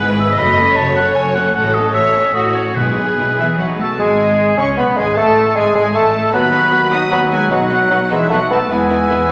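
An up-front solo bassoon with a clear tone and light vibrato stands out in this stormy, restless fragment of a quick classical-period movement for symphony orchestra in triple time, played with rubato. From the start, a rich, focused violin section carries the bowed melody with a smooth top. Behind it, an intense second violin section, a distant, roomy oboe and a clear, focused viola section add lines and accompaniment, while smooth, even cellos and an expressive, close double bass section hold the bass. Round, soft-malleted timpani sound briefly at 2.8 s, and a dark, tight trumpet section adds background stabs from 3.4 s. At 4.0 s a new section begins: the bassoon enters, a very quiet clarinet and an airy, metallic flute add further lines, and a faint French horn section sustains chords, as the harmony moves from F# minor through B and G# minor add11 toward E, all set in a wet scoring-stage reverb.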